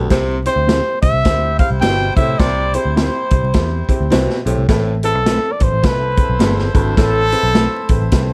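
A mellow, up-front trumpet carries the melody in this joyful, uptempo 1960s-style soul excerpt, its jazz-style lines shaped with scooped notes over a swung 4/4 feel. Beneath it, a baritone saxophone plays a low riff with vibrato and a warm subtone, while a dark, round, foam-muted picked electric bass anchors the bottom. A vintage acoustic drum kit sits close in the mix with a tight kick, a medium-tuned snare, hi-hat and a rolled-off top, and a worn, woody upright piano with audible action noise and a slightly detuned, long-sustaining tone fills in the accompaniment. A clean, fingered electric guitar adds stabs from the background, and a distant, roomy horn section joins at 1.2 s with a soft second line. The harmony moves from C to Amadd9 at 4.7 s, all set in a small room with light reverb and a layer of vinyl crackle that gives the recording a warm, nostalgic glow.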